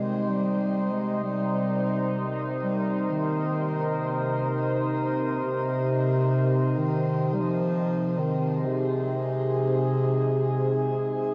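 Dark and unsettling, this brief dark ambient drone cut from a longer piece floats in free time, as a mellow, up-front bass clarinet sings a classical-style solo line through shimmer reverb and delay over a deep, moody pad of detuned sawtooth and sine layers with a sub octave and chorus, the pad sustaining an Ab/C chord for 11.3 seconds inside a huge, wet reverb.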